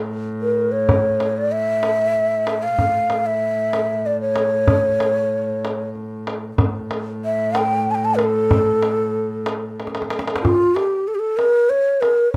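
Light reverb frames this stately, passionate Persian modal excerpt in dastgah homayun on A, moving in a slow, straight 6/8 at 63 BPM. A breathy, hollow ney carries the melody up front with vibrato and tongued notes, over a deep tombak and a single bowed double bass holding a rich, airy sul tasto drone on A2. A tombak fill at 9.8 s leads into a short new section as the bass drops out at 10.5 s.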